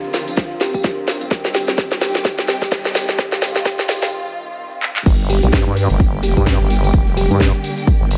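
Dark, bowed strings with lush vibrato pulse against a house kit of cracking snare, metallic hats, claps and cymbals, while a very quiet, moody pad and a jingly tambourine sit beneath and a punchy kick joins at 0.4 seconds, opening this aggressive, gritty bass house cut in G minor at 128 BPM with a swung sixteenth feel. A round, tine-like synth pluck sounds a single note far back in the mix through chorus and delay as a filter sweep builds over drum fills, moving from Bb to C minor before a break at 4.1 seconds. At 5.1 seconds the drop lands on G minor with a nasal, resonant wobble bass, saturated and pumping, driving hard up front.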